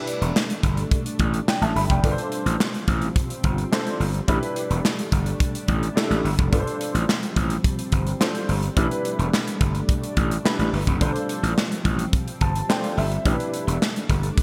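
A warm grand piano with audible action noise opens this danceable early-eighties boogie funk groove in A minor at 107 BPM, joined at once by a silky, warbling string machine holding soft chorused chords in the background, a polished studio drum kit with tight kick, handclaps, hi-hat and snare wrapped in gated reverb, and a growly, overdriven slap bass punching up front, all moving between A9sus4 and G9sus4 chords under bright digital hall reverb until a piano fill at 12.1 seconds.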